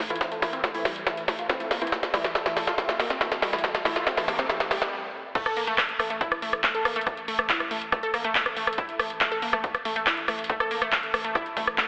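Driving peak-time techno at 140 BPM in a relentless 4/4, this cut-out opens with a build-up where a lush, detuned sawtooth unison pluck riff sits up front with tube saturation, tape echo and sidechain pumping over crisp, dark wavetable chord stabs with dub echo, a very quiet swarming drone, a drum fill, cracking snare, metallic hats, handclaps, rim clicks, crash and a punchy layered electronic kick, then after a stop from 4.9 to 5.4 seconds the drop lands with a very quiet sub drop and a deep overdriven sine sub bass in the background, all bathed in lush hall reverb and squeezed into a heavily compressed, telephone-like radio sound.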